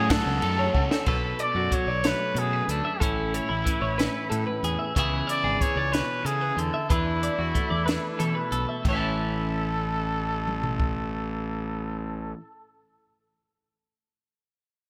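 Wistful and intricate, this math rock and midwest emo excerpt moves at 62 BPM in a straight 6/8, centred on A major. A breathy, whispered trumpet carries the melody up front, its soft attack and vibrato set in a distant, roomy space with digital delay. Beneath it a compressed twelve-string electric guitar picks arpeggios through a lush chorus, while a growly, fuzz-laden fingered bass sits forward with overdrive. A crunchy, double-tracked overdriven guitar riff in the background opens the passage and stops at 1.1 seconds, as a drum fill hands over to a bright, scooped clean guitar with spring reverb that carries the accompaniment from there. The compact cocktail kit sounds dry and acoustic, with dark cymbals, a high-tuned snare and a punchy kick, and falls away at 10.9 seconds. The harmony drifts from F#m through Bm7, Amaj7, C#m7 and E7sus4 before resolving on A, all framed by a moderate plate reverb and a bright 1980s-style digital production.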